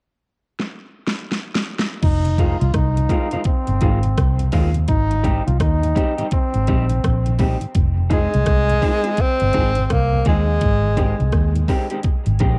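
A clear, up-front tenor saxophone carries the melody late in this meditative, serious roots reggae excerpt, entering at 8.1 seconds with a vibrato-laced, punchy pop-style solo over Fm7 and Abmaj7 chords. Before it, a bright, close-miked trombone plays a second line from 2.0 to 7.4 seconds, its notes trailing off into dub echo. The electronic, layered drum kit opens with a fill and drives the swung groove with a knocking kick, a huge snare, metallic hats, rim clicks and crashes, all given a tape-softened edge. Beneath it sits a dark, foam-muted fingered electric bass, round and amped, while an electric guitar through a small old amp adds slightly broken-up, picked, lo-fi accompaniment with tube saturation. A very quiet, flute-like tonewheel organ with chorus vibrato and key click fills in underneath, and the whole home cassette recording feels dry and close.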